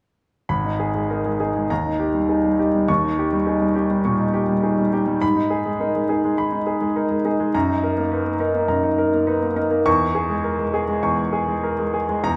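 Classical virtuoso piano study with an agitated, passionate mood, heard in a short excerpt where a solo grand piano plays from 0.5 to 12.4 seconds with a flexible rubato feel, ranging from deep bass up into the high treble. The piano sounds clear, intimate, polished and up front, with the action noise of the instrument audible beneath the notes. A wet recital hall reverb surrounds the playing.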